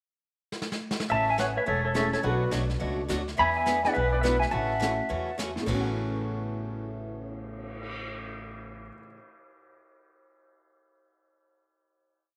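Heard through a small room with a moderate echo-chamber glow, this brief, down-home western swing piece in A major swings along at 210 BPM as a brushed drum fill with dark cymbals leads in at 0.5 seconds, then a twangy, up-front pedal steel carries the motif-based melody over a pure, straight-toned flute harmonizing mostly in thirds, while a woody pizzicato upright bass plays two-beat root-and-fifth lines with walk-ups, a boxy picked acoustic guitar keeps four-to-the-bar rhythm, and a jangly tack piano enters at 1.9 seconds with syncopated comping before the band rests on a final chord at 5.7 seconds.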